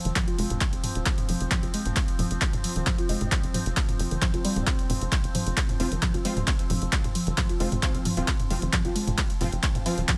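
A resonant sawtooth drone with moving overtones opens this dark, industrial slice of driving peak-time techno at 133 BPM in a straight 4/4, sustaining on an F5 chord with chorus and built-in reverb as sidechain pumping breathes through it. Almost at once a tight sequencer bass joins with a punchy, mellow sawtooth-and-square tone and a fast-attack filter pluck, alongside a heavy, layered electronic kick re-recorded in a large room. A dry, overdriven analog drum machine sits up front with handclaps, hi-hat, ride cymbal and toms, its hats, toms and cymbals pumping under sidechain. Tucked in the background, a woody, wave-folded pluck carries the riff, its triangle-and-sine body edged by a noise layer, a moving notch, subtle chorus and tape echo. At 5.8 seconds an aggressive rave stab cuts in, thick with detuned unison sawtooths, warbling and bright, swept by a filter and trailed by dub echo and reverb. 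Digital ambience surrounds the whole cut, which is taken from a longer piece.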